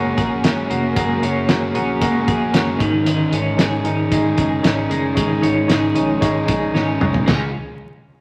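Youthful and bright, this short cut of jangly indie pop moves at 114 BPM in a straight 4/4, set in a large studio reverb with a vinyl crackle running underneath. A twelve-string electric guitar sits up front playing clean, twangy, compressed arpeggios, while a barky, reedy electric piano with fast tremolo fills in the accompaniment through its built-in speakers. Further back, a crunchy overdriven guitar adds picked grit to the chords, and a vintage foam-muted picked bass holds the low end with a dark, round tone. The cloth-damped drum kit enters at 0.2 seconds, sounding muffled and lo-fi with a fat snare, tight kick, hi-hat, toms and a china cymbal, all with a rolled-off top. The harmony moves from Gbadd9 to Absus4, and a drum fill from 6.7 seconds leads into a Db chord at 7.3 seconds.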